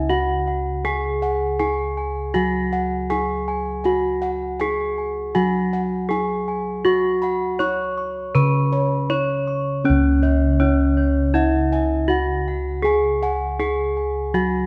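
The recording sits in a moderate recital-hall reverb that lets the bronze ring out around a close, present core. This is a ceremonial, shimmering fragment of Javanese gamelan, cut from a longer piece, moving at 80 BPM in a straight 4/4 in C# slendro. A bronze metallophone struck with a horn mallet carries the melody between C#4 and C#5, ringing and smooth from the front of the sound. Above it, a set of bossed gongs spins arpeggios with a round, beating, dark tone, joined by a second metallophone whose wooden-mallet arpeggios have a boxy, small-room character. Lower bossed gongs anchor the bass from C#2 to G#4, close-miked, dry and full, and all four parts play together for the full 14.7 seconds.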